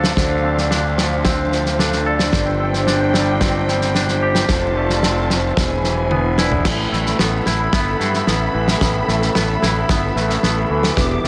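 Brooding and melancholic, this post-rock excerpt moves at 111 BPM in A minor, with a dark, lush string section holding bowed sustained chords while a clean, twangy electric guitar and a ringing, metallic vibraphone with slow motor vibrato spin arpeggios through diffuse ambient delay, the vibraphone sitting in the background. Up front, a growly fuzz bass and a loose indie drum kit with a fat snare, tight kick and dark cymbals anchor the Dm7, Gsus4, F and E changes, and a drum fill at 6.1 seconds leads into an Asus2 passage at 6.7 seconds. A wet plate reverb soaks the whole mix in a dreamy haze.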